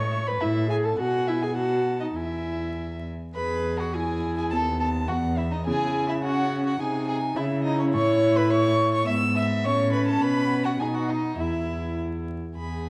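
A spirited classical-period string quartet movement in E major moves quickly at 104 BPM in 2/4, its bowed gut-string parts in period style giving the lively excerpt a reedy edge. A rich first violin carries the melody above a nasal, airy-bowed second violin, while a dark viola with a smooth top fills in the accompaniment and a warm cello anchors the bass; the harmony passes through C#m and settles on B before the chords fall away at 11.4 seconds. The recital hall reverb is wet, and the dark production carries a vinyl crackle.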